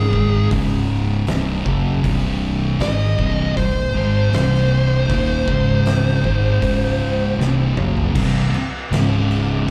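Heard live through a club PA with light room reverb, this ominous, heavy stoner and doom metal fragment sets an up-front thick fuzz guitar riff and its very quiet twin against a growly, punchy fingered fuzz bass and an oversized low-tuned kit with dark cymbals, a fat snare and a gritty, saturated room, while a dark fuzz lead guitar carries the melody until 7.4 s, when a drum fill carries into a new section at 8.2 s.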